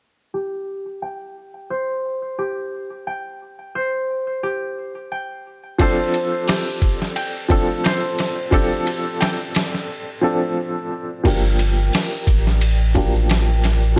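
Trip hop at 88 BPM in G minor, melancholic and cinematic, opens at 0.3 s with ringing, fingerpicked concert harp arpeggios under a filter sweep and delay, then a woody, slightly detuned upright piano with audible action noise, tremolo and tape echo enters at 5.8 s alongside a gritty, compressed sampler-style drum kit with a thumpy kick, before a deep, round sine sub bass and faint background maracas arrive at 11.3 s as the filter sweep shifts onto the piano, all in a dark, reverb-softened mix.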